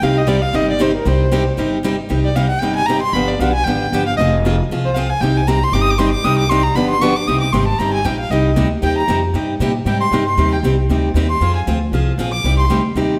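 This is acoustic string swing in the jazz manouche style, a fiery, virtuosic passage cut from a longer piece and played with a brisk swung feel in four. A bowed violin carries the solo throughout, its tone warm and expressive, with vibrato, a soft attack and portamento, heard close and up front. Beneath it, a picked steel-string acoustic guitar supplies the accompaniment with a bright, boxy parlour sound, fresh strings and audible finger squeak. A pizzicato upright bass on gut strings gives a woody, dark, thumpy low end, also placed up front. The music runs through two statements of the same section, the second starting at 7.3 seconds, over a minor progression that passes through a dominant chord with a flattened ninth, and the recording sits in a moderate recital hall reverb.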